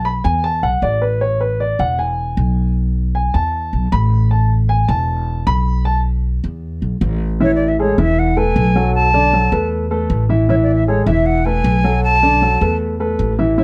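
This excerpt of Cuban son and guajira moves at a relaxed 155 BPM in straight 4/4, with a sunny, easygoing mood and tuning set slightly low at A4 = 436 Hz. A dark, vintage baby grand piano plays smooth arpeggios with long sustain throughout, carrying the opening 7.4 seconds over an upright bass. That bass is acoustic and pizzicato on gut strings, thumpy and woody, sitting up front in the low register. At 7.4 seconds a mellow jazz flute enters with the melody, its metal tone hollow and airy, with a soft attack, straight tone and rolled-off highs. The harmony circles around Esus4, alternating with A5 and moving to B7sus4 and then Bm7 in the later passage. Light reverb and a dark, warm production round out the recording.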